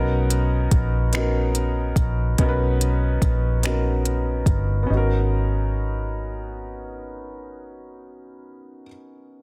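Sultry and late-night, this short excerpt of slow R&B moves in a straight 6/8 at 48 BPM counted in dotted quarters, set in G# minor. A warm concert grand piano carries the accompaniment in an intimate, natural voice, up front with audible action noise and deep bass, holding a Bmaj7 before shifting to G#m11 at 4.9 seconds as the music passes into a second section. Beneath it, a vintage muted fingered electric bass sits low and up front, its foam-muted tone dark, round and punchy through an amp, playing until 8.9 seconds. A smooth, electronic R&B drum kit joins at 0.3 seconds with finger snaps, smooth hi-hat and a soft kick, its snare soft-clipped, and it drops out at 4.7 seconds. Digital ambience surrounds the parts, and the master is dense and heavily limited in a modern style, with the piano ringing on to the close at 9.4 seconds.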